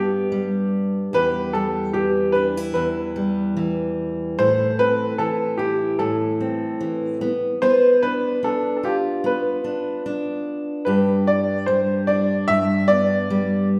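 Pop in a reflective, wistful mood, this brief passage from a longer piece sets a clear, woody upright piano melody, up front, over a fingerpicked steel-string acoustic guitar with fresh strings, both playing throughout as the chords move from G through Em, Am and Bdim back to G, all bathed in the lush reverb of a church or concert hall.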